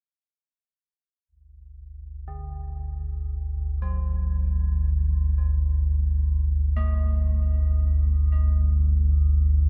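Ominous and desolate, this short dark ambient drone piece is cut from a longer work, with a deep, rumbling, nasal drone entering up front at 1.9 seconds, its detuned, ring-modulated tone given lush chorus and built-in reverb. From 2.3 seconds a gamelan-type bronze metallophone fades in with bright, ringing arpeggios set much lower in the mix and trailed by delay, over a Dadd11/G harmony. The whole recording sits in light reverb and carries the worn, warbly pitch drift of old cassette tape.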